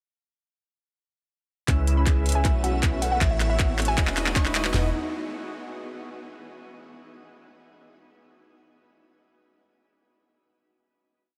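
From 1.7 seconds, a deep, boomy 808-style bass and a trap kit with a hard-clipped kick and sharp snare drive this bright, playful half-time future bass piece in E major at 157 BPM, joined by a dubstep kit's metallic hats and claps, huge detuned supersaw chords with phaser and a filter sweep, an airy lead doubling those chords, and a fingerpicked concert harp in the background, while a crystalline wavetable pluck and a shimmering ambient pad enter soon after and a very quiet riser lifts the build from 3.4 seconds before everything settles onto an Emaj9 final chord at 4.7 seconds.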